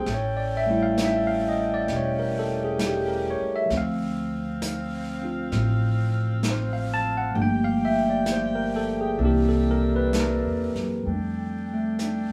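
A late-night, romantic jazz ballad at 66 BPM in F major, swung in 4/4, cut from a longer piece. A clean tine electric piano sits up front carrying the accompaniment, with a woody pizzicato upright bass close beside it and a mellow saxophone section holding soft-attack sustained chords with light vibrato, while a brush drum kit adds airy touches of brushed snare and hi-hat. The band sounds like it's playing live in one room under light reverb, moving through A7, Dm7, Gm7 and C9 before settling on F69 at 11.1 seconds.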